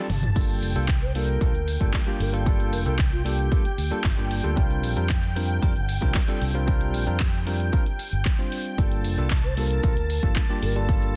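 A dense, heavily limited modern master with digital ambience frames this short cut from a longer nu-disco piece in G minor, running at 114 BPM in a straight 4/4 with a cosmic, sleek mood. A brief drum fill opens the clip before the drop lands at 0.4 seconds, where a punchy, up-front electronic kick joins a layered house kit of crash cymbal, handclaps, hi-hat, shaker and toms, both set in small room ambience. A fingered electric bass, bright and amped through an envelope filter, drives the low end, while a bell-like tine electric piano plays clean accompaniment with analog chorus, sidechain pumping and digital delay. Above them, a lush unison pad of detuned sawtooth and square waves holds sustained chords with a slow attack and long release, colored by chorus, 12-bit sampler grit and its own sidechain pumping. The harmony moves from Gm9 to C9sus4 and back to Gm9, as an airy, hollow concert flute with vibrato and tongued notes floats a melody through digital delay, appearing from 1.0 to 4.0 seconds and again near the end.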